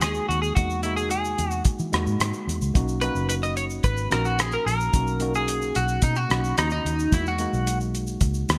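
Up front, a bright, twangy twelve-string electric guitar strums a clean accompaniment, its compressed, picked tone bathed in lush chorus and a warbly pitch drift before it drops out at 7.8 seconds, while a clean electric guitar solo runs through the whole excerpt. This dreamy, laid-back indie and bedroom pop excerpt moves at 110 BPM in a straight 4/4 in B major, drifting from Emaj9#11 to Bmaj7 and back. Beneath it, a worn, slightly out-of-tune tine electric piano, lightly overdriven as if through its own built-in speakers, fills in the middle register. A vintage muted fingered electric bass gives a round, dark, foam-muted low end. A cloth-damped, thuddy drum kit sits up front with a tight kick, rim click, hi-hat and shaker, dry and smooth with a rolled-off top and a touch of gated reverb. The whole piece has a crisp 1980s-style digital sheen with light reverb and a small-room ambience.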